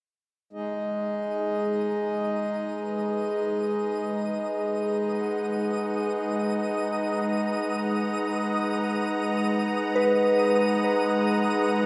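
Reflective and spacious, this free-time ambient passage in G# minor, cut from a longer piece, opens at 0.5 seconds on a G#m9 chord. A detuned sawtooth analog pad with chorus fades in up front beside a reedy, breathing pedal harmonium drone that fades out. From 1.3 seconds a sparkling granular texture with an octave-up shimmer fades in, and at 10.0 seconds a soft, warbling FM synth bell enters with arpeggios, carrying chorus and analog delay, all set in a wet spring reverb with an echo-heavy mix.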